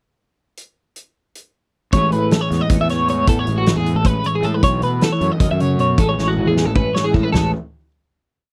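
A dry, close 1970s-style studio sound with light reverb frames this bright, playful math rock and midwest emo piece in 7/8 at 311 BPM in A lydian, where a loose, gritty indie drum kit with a punchy kick opens the pickup alone at 0.6 seconds before two clean, compressed twelve-string electric guitars, one playing a picked, chorused ostinato and the other picking a twangy rolling arpeggio with tremolo, join a growly, fuzz-overdriven fingered bass riff at 1.9 seconds over Amaj7 and B7sus4, with a drum fill at 6.2 seconds leading to the final chord.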